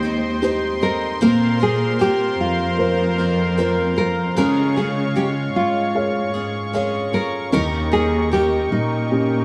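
With light reverb capturing a band playing live in one room, this hopeful, tender pop ballad at 76 BPM layers a boxy, intimate felt-muted upright piano; a warm, detuned sawtooth pad with chorus holding sustained chords; bright picked arpeggios from a jumbo steel-string acoustic guitar with audible finger squeak; and a veiled, bowed con sordino cello section carrying the bass with light vibrato, all beneath a fingerpicked classical nylon-string guitar melody that enters up front at 0.8 s over chords moving from Abmaj7 through Bbsus2 and Db to Eb7.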